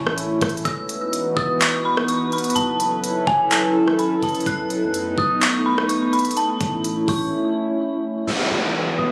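A warbling, nostalgic tape-like pad, detuned and lo-fi with chorus, phaser, low-pass filtering and sidechain pumping, sits up front over a deep, boomy 808-style bass in the background, while a trap kit with knocking kick, crisp hats, handclaps and rim clicks sets a half-time 126 BPM groove in this dreamy, floating atmospheric cloud-rap excerpt moving through A, E5, F#m7 and B7, an eerie, inharmonic FM bell melody with tape echo drifts high above from 0.7 seconds, and the drums fall silent at 7.3 seconds before a downlifter sweeps in at 8.3 seconds.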